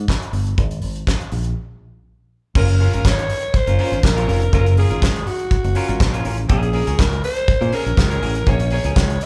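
A straight 4/4 disco groove at 122 BPM drives this danceable fragment of a longer piece. A damped 70s drum kit and a fingered electric bass start together. The drums sit up front with a tight kick, a fat snare, handclaps, hi-hat and dark crash cymbals, while the bass is round and punchy with a touch of tube saturation. After a short break at 1.6 s, a growling alto saxophone takes a jazz-style solo from 2.6 s, close-miked, breathy and raspy with light vibrato. A bright, clean semi-hollow electric guitar enters at the same moment, picked quietly underneath as the harmony moves from Absus2 to Gbmaj7 and then Bbm7. The band plays live in one large studio with a moderate reverb around them.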